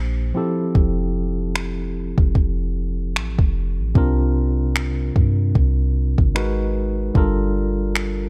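A clean tine electric piano and a deep, round 808-style bass open this moody, longing contemporary R&B excerpt at 75 BPM with a 16th-note swing, before a smooth, tape-tinged drum kit of finger snaps and soft kick joins at 0.8 seconds, all sitting up front in a dark, dry production as the harmony moves from Fmaj9 through C7sus4 to Abm9 and Gm9.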